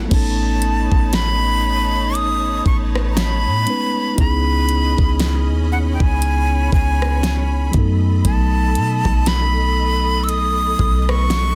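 This short excerpt opens with a mellow tine electric piano, lush bowed strings and a deep, boomy 808-style bass sounding together, with a breathy, bright jazz flute and a smooth R&B drum kit joining at 0.1 seconds. It is contemporary R&B in C# minor at a slow 59 BPM in 4/4, its sixteenths carrying a light swing, and the mood is sensual and late-night. The flute carries the melody up front in a high register, its crisp, chiffy attack and vibrato standing out, while the electric piano supplies clean, direct accompaniment and the string section holds focused sustained chords at a lower level. The bass sits up front with a dark, sine-like tone and fast attack that decays, and the electronic-sounding kit offers a knocking kick, fat snare, hi-hat, rim click and crash cymbal, re-recorded in a small room. Harmony moves from Amaj9#11 to C#m9 at 4.2 seconds and B7 at 7.7 seconds, and the whole is dry, dense and heavily limited in a modern master.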